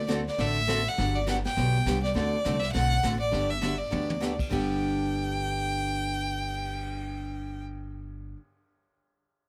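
Country western swing with a cheerful, down-home mood, this short passage cut from a longer piece moves at a brisk swung pace. A clear, focused fiddle carries the melody up front, bowed by a single player with light vibrato, and stops at 7.6 seconds. Beside it, a picked acoustic archtop guitar with old strings gives a boxy, woody accompaniment, while a pizzicato upright bass on gut strings thumps out a dark low line. A vintage brush drum kit sits in the background with dark cymbals, a tight kick and a rolled-off top, adding a fill at 3.9 seconds before dropping out at 6.8 seconds. The harmony shifts between D7 and Gmaj7 before settling on G, all framed by a light reverb.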